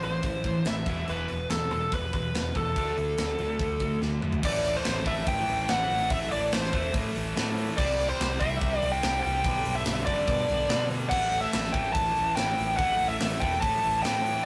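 A straight 4/4 pulse from a tight, polished metal drum kit with bright cymbals and a tight kick drives this menacing, aggressive hard rock passage, cut from a longer piece, with a drum fill at 4.0 s before the chords move from Am, E5 and D5 to Am, C, G and A5. A scooped, double-tracked high-gain guitar pounds out the distorted riff while a biting, overdriven lead guitar sits up front with the melody, and a growling picked bass adds overdriven weight underneath. A moderate stone room reverb and tube saturation give the whole track a rough rehearsal-room character.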